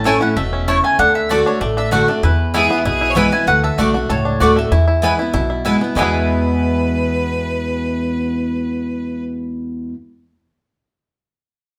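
A straight, driving 4/4 at 193 BPM in E mixolydian sets up this joyful bluegrass passage, cut from a longer piece, where twangy fingerpicked banjo and a round, picked mandolin carry the melody until that mandolin drops out at 5.6 s, a second, woody mandolin adds stabs, a bright, full-bodied dreadnought guitar sits up front in the accompaniment, a thumpy, gut-strung upright bass anchors the low end, and a biting bowed fiddle with light vibrato adds a second line briefly at 2.5 s and again from 6.0 s, the band playing live in one room with moderate studio reverb.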